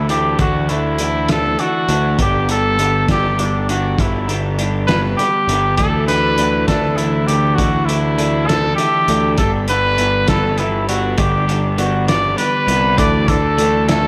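An upbeat, carefree indie rock excerpt in 6/8, where a punchy, vintage trumpet with light vibrato carries the melody up front over a bright, twangy twelve-string electric guitar riff, a fuzzy overdriven bass, and a muffled, cloth-damped drum kit with a fat snare, all set in a lush hall reverb for a big arena sound, while a slightly broken-up electric guitar through a small old amp slips in behind at 13.0 seconds.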